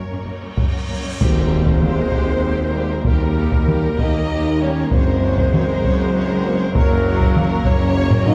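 Heavy-stick taiko drums sit up front in this adventurous, triumphant excerpt of an epic orchestral film score, entering at 0.6 s and driving a broad 6/8 pulse at 65 BPM in dotted quarters. A huge, dark cymbal swell rises into a full band accent and impact at 1.2 s, where timpani on medium mallets and a very quiet tam-tam join in, and the harmony moves from Gb to Eb before returning to Gb. A lush symphonic violin section carries the focused, smooth-topped melody with vibrato, while a rich, expressive chamber violin section and an airy, hollow concert flute share a second line. A warm, smooth viola section fills in the accompaniment in the background. Beneath them, dark French horns and distant, roomy trombones hold tight sustained chords, and woody double basses, a softly attacked cello section and a lightly vibrato tuba anchor the bass. The whole orchestra is heard from further back in a wet concert hall, and the taiko closes the passage with a fill at 8.1 s.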